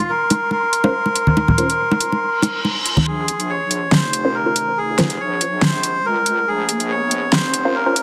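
A half-time 4/4 groove with a light swing on the sixteenths drives this heavy, cavernous slice of deep dubstep. Up front, a reedy melodica carries the melody throughout, its dark, smooth tone trailing dub echo, while a breathy, wind-like tuned noise texture drifts mellowly in the background at the start. The electronic deep house kit arrives at 0.3 s with a fat snare and metallic hats, overdriven and layered, joined by bright, close and dry bongos and congas that drop out at 3.0 s. Filtered dub chord stabs, muted and nasal with detuned sawtooth bite and a phaser, punctuate the track in short, echoing bursts under a filter sweep. A reverse cymbal swells in from 2.4 s, and at 3.1 s a saturated wobble bass, built from square and sine waves with chorus, enters as a riser pushes a build-up. A wet spring reverb, vinyl crackle and a dense, heavily limited master give the whole cut its dusty, weighty character.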